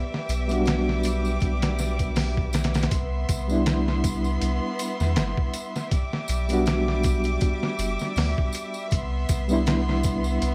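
A swung, loping trip hop groove from a compressed, pitched-down sampler-style drum kit, gritty and tape-warm with a thumpy kick and medium-tuned snare up front in studio reverb, sits over a round, mellow dub sub bass and a tambourine tucked in the background. A rich, focused chamber violin section sustains bowed vibrato chords with a vintage 12-bit sampler grit, while a reedy electric piano enters at 0.5 seconds with tremolo and tape echo, all under a layer of vinyl crackle. An airy, breathy wind-like texture lasts only until 2.9 seconds, leaving a dark, cinematic loop that moves between Em7/B and Cmaj7 in this excerpt from a longer piece.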